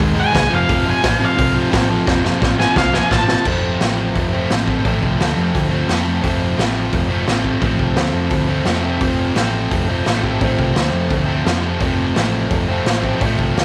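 A straight 4/4 garage rock pulse at 173 BPM in F major drives this rowdy, swaggering excerpt, with a raw small-room drum kit of punchy kick, medium-tuned snare, hi-hat and crash, a gritty, saturated thump rolled off on top, under an up-front, double-tracked overdriven guitar riff and a round, hollow-body picked bass, while a dark octave-fuzz lead guitar melody cuts in from 0.2 to 3.5 seconds over a drum fill that starts at 2.1 seconds, all in a light studio reverb.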